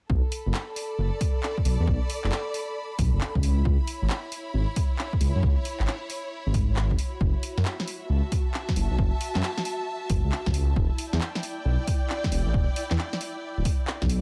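A dark, detuned saw bass rumbles up front alongside a punchy, overdriven electronic kick and a lush bowed string section with sidechain pumping from 0.1 s, joined at 0.3 s by a layered garage kit of cracking snare, handclaps and tape-warm hi-hat, in this skippy, late-night two-step UK garage cut at 135 BPM in B minor, swung on the sixteenths and moving through Bm7, C#m7, F#m7 and Em7 under vinyl crackle in a dry mix.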